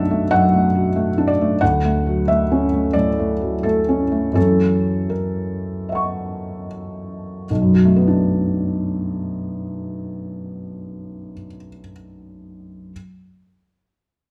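In a rubato 4/4 that drifts between 73 and 93 BPM and slows from 0.3 to 7.5 seconds, this wistful, intimate fragment of neoclassical minimalist piano sits in B minor, moving through Bm7, Dmaj7 and F#7 before returning to Bm7 at 7.5 seconds as a new passage begins. A solo felt-muted upright piano, ranging from B1 to C#6, plays throughout with a soft, mellow, vintage tone, placed up front with its action noise clearly audible. The piano was captured live in a large studio whose wet reverb lends the close, hushed sound a gentle sense of space.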